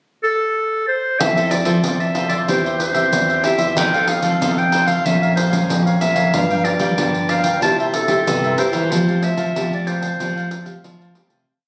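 A festive, playful samba and choro piece at 93 BPM in F major, where a clear, classical-style clarinet opens alone with a pickup before carrying an up-front, motif-based melody built in sentence-like phrases. At 1.2 seconds the cavaquinho enters strumming crisp, mellow sixteenths, joined by a full-bodied nylon-string guitar with thumb bass and syncopated plucked chords, a bright second nylon-string guitar on a fingerpicked samba bass figure, and a jingly pandeiro. The phone-in-the-room recording has light reverb and compression, and the music fades out from 8.9 seconds as the harmony settles on Fadd9.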